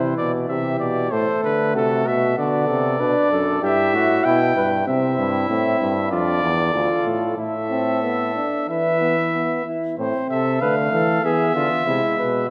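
Bathed in a wet concert-hall reverb, this elegant, lively brass-ensemble canzona fragment moves at 96 BPM in straight 4/4, with an up-front warm trumpet carrying the melody over a flugelhorn second line, a vintage-toned trombone with light vibrato in the accompaniment, and a clear, vibrato-tinged euphonium holding the bass up front, all four playing throughout as the harmony turns toward A minor at 10.0 s.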